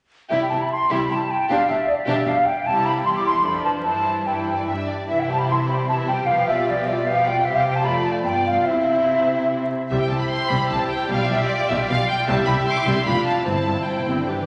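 A graceful, spirited classical-period orchestral passage in triple time with a rubato feel opens with a focused, smooth-topped violin melody over a soft, sul tasto second violin line, even violas and expressive, distant cellos, while an airy, crisp flute section sits up front with its own line until 9.7 s and rich double basses join at 9.9 s, the whole set in a long scoring-stage reverb under a dull, crackling vinyl patina.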